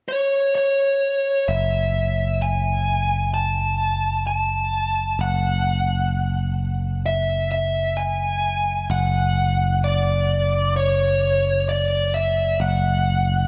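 A smooth, dark overdriven lead guitar carries the melody from the opening moment, picked up front between C#5 and A5 and trailed by tape echo, in a brooding, melancholic post-rock passage in F# minor at a slow 65 BPM in straight 4/4, tuned slightly low to A4 = 437 Hz. At 1.5 seconds a bright, growly picked electric bass enters, sitting direct and forward on a low F#1 beneath the guitar. A light digital reverb lends the fragment, cut from a longer piece, a faint sense of space.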